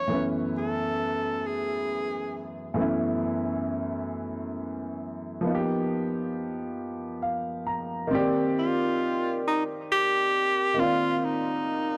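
A jazz-style tenor saxophone, up front with vibrato and scooped notes, carries a sultry, late-night R&B melody in 6/8 from 0.0 to 2.5 seconds and returns at 8.6 seconds, while a worn, vintage grand piano accompanies smoothly throughout over F#m11, G7alt and Cm9 chords and adds a fill before the second section, with a small room ambience and a dry, gritty hardware recording lending transformer saturation to this fragment of a longer piece.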